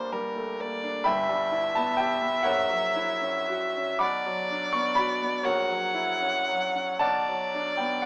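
Heard through light reverb with a small-speaker sound, this solemn, yearning romantic classical excerpt in B minor moves in a rubato 6/8 at 37-44 BPM, where a close, clear violin sings a smooth, even bowed melody with vibrato over a brilliant grand piano accompaniment whose audible action noise and long sustain carry the harmony from Gm and Em/G through F#7/A# to Bm across its 8.1 seconds.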